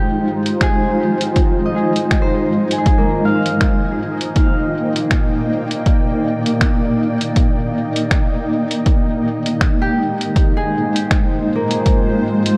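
A punchy, overdriven electronic kick sits up front in this meditative, spacious ambient dub fragment, arriving at 0.6 s just after a muffled, pitched-down sampler-style kit of finger snaps and hi-hat in a small room enters at 0.5 s, while a blurred, detuned granular cloud pad holds sustained chords moving from Fm7 to Ebmaj7 and back, and a bright, fingerpicked concert harp rings out arpeggios through tape echo over a lightly swung 4/4 feel.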